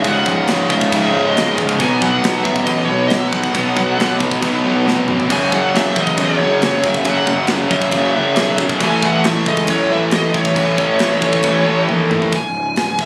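A dark, aggressive heavy metal passage in C# minor bursts in at 137 BPM in a straight 4/4, with a bright, high-gain lead guitar carrying the melody over a dense wall of riffing guitars from the very first beat. Beneath it, a double-tracked, compressed fuzz guitar and two picked high-gain rhythm guitars sit in the background, churning through a progression that moves from C# minor to B5, F#5 and A. A growly, overdriven fuzz bass, heard both direct and amped, anchors the low end further back in the mix. The tight, polished drum kit, with its airy big-room sound, bright cymbals, medium-tuned snare and tight kick, drives the passage and drops in fills at 4.9 and 11.9 seconds. The riffing guitars cut off at 12.3 seconds, leaving the lead, bass and drums to ring briefly into a C#5 chord under light reverb and a phone-in-the-room character, as this fragment of a longer piece ends.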